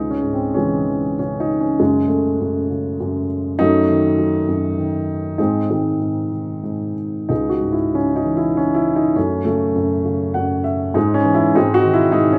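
A dark, woody upright piano plays alone from the first moment in this brooding, cool excerpt of lyrical classical solo piano, moving in a rubato three-beat lilt through minor-key chords with mellow long sustain, sitting up front in light reverb and slipping in a brief fill at 10.1 seconds before the cut at 12.4 seconds.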